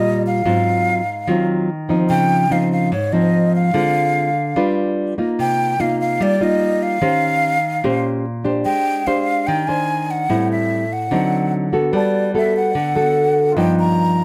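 Relaxed and breezy, this bossa nova moves at 147 BPM in a straight 4/4. A breathy, mellow silver concert flute carries the melody up front with vibrato, a crisp attack and a slightly unsteady tone, bathed in plate reverb. A thumb-plucked classical nylon-string guitar, complete with finger squeak, accompanies it through chords such as Dbmaj9, Dm7b5 and Abmaj7#11. A warm baby grand piano slips in quietly in the background at 11.9 seconds, all within a moderate studio ambience.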